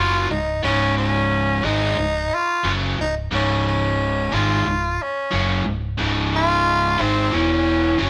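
A raspy tenor saxophone leads this swaggering, driving rock excerpt, its gritty, punchy solo voice sitting up front with vibrato as it carries the melody between C4 and F4. Beneath it, a biting overdriven guitar plays a picked, double-tracked riff, also placed up front, ranging from Db2 to Ab3. A fingered electric bass, heard direct, holds down the low end from Db1 to Ab1. The band moves at 90 BPM in a straight 4/4 feel, centred on Db major before shifting to an E5 chord at 7.3 seconds, with tuning set to A4 = 438 Hz. All three parts play throughout the 8.1-second clip, which is cut from a longer piece and sounds like a band playing live together in one room, with a moderate stone-room reverb of about 1.1 seconds surrounding the sound.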